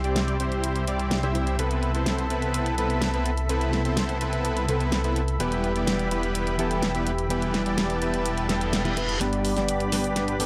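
Festival progressive house at 126 BPM in E minor, this euphoric, powerful excerpt pairs a huge, compressed supersaw riff and a menacing, saturated detuned saw bass, both up front, with a layered electronic pop kit of cabasa, hi-hat and fat snare, while a lush, bright chorused pad sustains chords from C through Amadd9/C to Em. Tucked in the background, a boxy, fingerpicked plugged-in steel-string acoustic guitar with digital delay adds fresh-stringed texture, and the filtered supersaw also carries digital delay. A reverse cymbal and riser enter at 8.5 seconds, and from 9.2 seconds a drum fill and a filter sweep on the supersaw drive a build-up over G, all within light reverb and a dark production.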